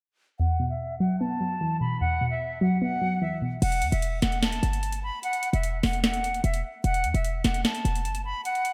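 Hip hop in a trap vein, this dark, menacing excerpt moves at 149 BPM in a half-time feel, set in E minor. An airy silver concert flute carries the melody from 0.4 seconds, its vibrato and soft attack softened further by a low-pass filter and delay. Alongside it, a warbly, dusty pluck with a detuned, lo-fi, vintage character supplies the accompaniment over an Esus2 chord, a filter sweep running across it until 3.6 seconds, when it drops out. At that point a short, punchy 808-style bass with a tight sine body and a noise layer arrives together with a booming analog drum machine, whose crisp snare, metallic hi-hats and crash cymbal sound re-recorded in a large room. The dreamy mix is soaked in a moderate plate reverb, lending the excerpt a digital ambience.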